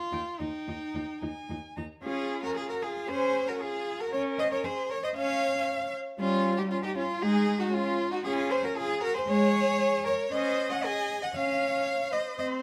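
A quick classical-period string quartet movement in a graceful, cheerful mood, this excerpt moves with a flexible rubato feel and is heard in a moderately reverberant stone room. A distant, warm-toned first violin carries the melody with expressive vibrato and portamento, while a focused, rich second violin sits up front on the second line. The viola's accompaniment is up front and gliding with portamento, and the cello anchors the bass with a smooth, even bowed tone, all four playing throughout the roughly 12.6 seconds.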